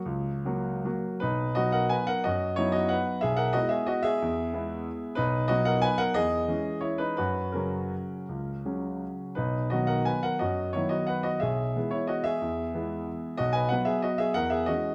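A clear concert grand piano plays alone in this elegant, graceful classical waltz, a short passage of about 15 seconds cut from a longer piece. The solo part spans B1 to C#6, with a deep bass and an open, clear tone. The waltz moves in three with a flexible, rubato feel, so the pulse gives and stretches. The harmony circles around its home chord of B major, passing through related chords along the way, and the opening gesture gives way at 1.2 seconds to a longer second part. Close, detailed microphones keep the piano up front, while a moderate recital-hall reverb adds a natural sense of space around it.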